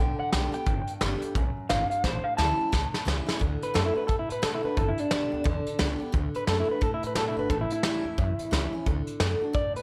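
A twangy, slightly broken-up electric guitar through a small old amp carries the melody up front, its dark, lo-fi, fingered tone trailed by tape echo. This retro, upbeat rockabilly clip, cut from a longer piece, swings its eighth notes in 4/4. Beneath it, a bright, full-bodied dreadnought acoustic guitar is picked on fresh strings with the odd finger squeak, while a woody, thumpy upright bass with gut strings is plucked pizzicato. A vintage brush kit joins at 0.3 seconds with hi-hat, a tight kick and a medium-tuned snare, sitting up front in a pumping studio room with a rolled-off top, and it plays a fill from 2.0 to 3.4 seconds. The chords move through G, A7 and D, and light reverb rounds out the sound.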